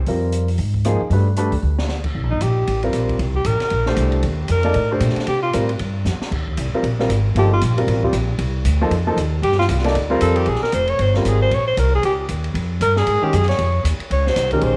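Hypnotic and intense, this fast modal jazz excerpt at 231 BPM swings in C dorian over a woody, growly upright bass, a warm concert grand piano and an open drum kit with dark cymbals, a high-tuned snare and boomy kick, before a clear alto saxophone with vibrato, subtone and scooped notes takes an up-front solo from 2.2 seconds and the music shifts to Bb dorian at 10.5 seconds, all set in a moderate echo-chamber reverb.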